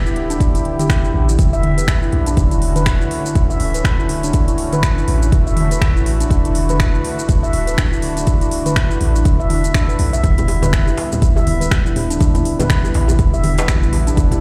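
A bright, ringing stainless-steel handpan plays meditative arpeggios with tape echo over a deep, boomy 808-style bass and a detuned sawtooth pad with chorus, tremolo and 12-bit grit, all three pumping to the sidechain, alongside a deep electronic kick and crisp afro-pop drums with snaps, shaker and toms in this earthy, spiritual afro house excerpt at 122 BPM with a 16th-note swing, moving from Em7 to Dmaj7 and back, with soft low-tuned congas and a rattling djembe joining in the background at 10.2 seconds.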